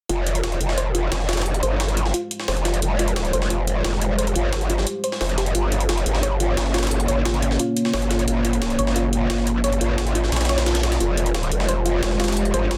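A growling, saturated bass sits up front in this dark technical drum and bass excerpt, its formant-filtered wobble bright and aggressive in the low register. Around it, a jungle sampler-style kit of hi-hat and a high-tuned snare plays from the start, its pitched-up hits gritty and overdriven, with high-pass filtering thinning the hats and snare. A soft, round pluck traces arpeggios in the background, its decaying notes carried by chorus and dub echo under a filter sweep. At 1.4 s a deep, moody analog pad arrives with slow-attack sustained chords, shaded by chorus, phaser and a filter sweep of its own. The harmony moves from Fmadd9 to Gdim at 5.5 s and returns to Fmadd9, giving a futuristic edge, and the track sits in light digital ambience within a dense, heavily limited master.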